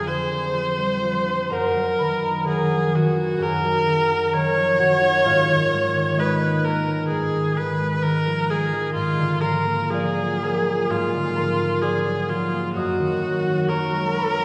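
The rubato, uneven beats of a slow 4/4 at 64 BPM give this solemn, elegiac romantic duo in Eb minor a breathing, unhurried pulse. A single bowed viola sings the melody up front with smooth, even vibrato and a silky top, while a ringing, thumb-plucked concert harp supplies the accompaniment across a broad span, moving through Abm and Bb7 before settling back on Eb minor. The pair sits in a wet concert hall, heard from further back, and this 14.4-second passage is cut from a longer piece tuned to A4 = 438 Hz.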